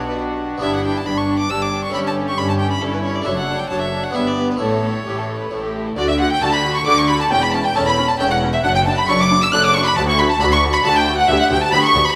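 Bathed in a wet concert-hall reverb, this brilliant, lively baroque-style concerto excerpt in triple time sets an up-front solo violin with a gut-string, period-style tone over a rich background violin section on the melody, a close second violin section, a dark, nasal viola section and a full, Flemish-style harpsichord with two sets of strings in accompaniment, and a distant cello section and a reedy double bass section on the bass.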